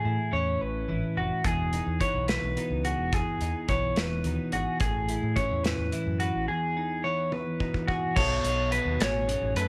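A lilting 6/8 pulse at 72 BPM in dotted quarters drives this bright, intricate excerpt of math rock and midwest emo in E major. A chiming, clean twelve-string electric guitar strums accompaniment over Amaj7 and Emaj7 chords from the start, while a twangy, slightly broken-up electric guitar through a small old amp spins arpeggios above it, with an overdriven, fingered bass rumbling underneath. A loose indie drum kit with a tight kick and medium-tuned snare enters at 1.4 seconds, its acoustic small-room sound pumping up front, and a drum fill at 7.3 seconds leads into a new section on a B9 chord at 8.2 seconds. Studio reverb gives the compressed, up-front guitars a polished sheen.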